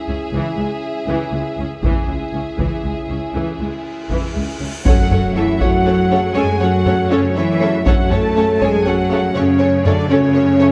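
Opening on a C#m chord, a distant, lush violin section carries the melody and a warm violin section a second line over mellow French horns, background violas, a clear, close cello section and a rich double bass section, with hard-stick taiko entering at 1.8 seconds and a huge, bright cymbal swell building to an impact at 4.9 seconds, where the harmony moves to F#m, an airy flute section and a thick pipe organ join, and a very quiet trombone section adds chords, all in a relentless, epic orchestral film-score style at 80 BPM in 12/8 and F# minor, filled out by moderate scoring-stage reverb.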